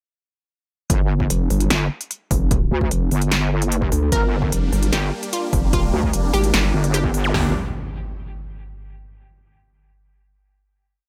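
Chaotic and heavy, this short heavy wobble dubstep piece in G phrygian drives at 149 BPM in a half-time 4/4 feel, launching straight into a drop at 0.9 seconds on a G minor chord, where a detuned square-and-sine wobble bass with overdrive and chorus trades modulated phrases of changing wobble speed with a dark, nasal vowel-sweep wobble bass, answering the other bass. Two layered big-room dance drum kits, re-recorded in a small room, supply a punchy kick, snare, toms and crisp hats in a half-time beat, while from 4.1 seconds a lush unison pluck repeats a riff melody through dub echo over huge, bright supersaw chords with phaser and sidechain pumping. Electronic zaps and impacts close the piece on a final chord from 7.3 seconds, all set in a digital ambience.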